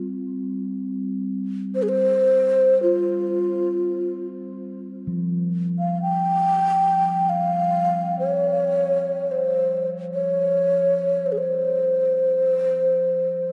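A breathy, hollow low xiao with crisp attacks and vibrato carries the melody up front from 1.7 s in this spacious, haunting free-time world meditation piece, its lines trailed by a diffuse ambient delay over a soft, ringing bronze singing bowl, struck with a felt mallet, whose slow metallic beating sounds from the opening, the mix steeped in a huge, dark reverb.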